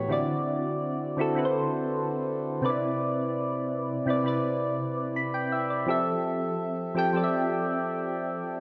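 Soft electric-piano-like synth keys play alone through this short R&B excerpt, their round, mellow tone given a gentle shimmer by chorus and phaser and set up front in a lush hall reverb. At a straight 83 BPM in 4/4, the longing, moody passage moves from D7 to Cmaj9 at 2.6 seconds and settles on Fmaj7 at 5.9 seconds. The notes have a fast attack and decay, spanning A2 to B5.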